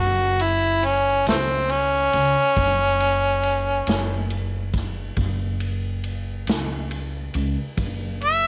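With little reverb overall, this brooding, smoky slow blues in 12/8 at 46 BPM puts a clear harmonica up front, soloing in a jazz style with light vibrato, tongue slaps, soft attacks and scooped notes over an F#5 chord, supported by a woody, dark pizzicato upright bass and a big-band drum kit (punchy kick, medium-tuned snare and ride cymbal, heard in a natural, big room) that enters at 0.4 s.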